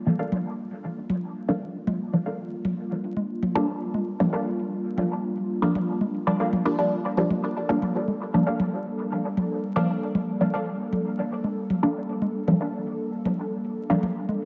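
Hypnotic and hazy, this dub techno cut from a longer piece rests on a single Gm7 chord. An airy, breathy pad sustains chords under chorus, while a muted, nasal filtered chord stab sits up front with phaser and dub echo, and a second, higher stab riff with a sub-octave square-wave edge evolves quietly beneath it. Tape-warm electronic toms and congas carry dub echo too, and the whole piece sits in a lush hall reverb with vinyl crackle as filter sweeps move across both the stab and the pad.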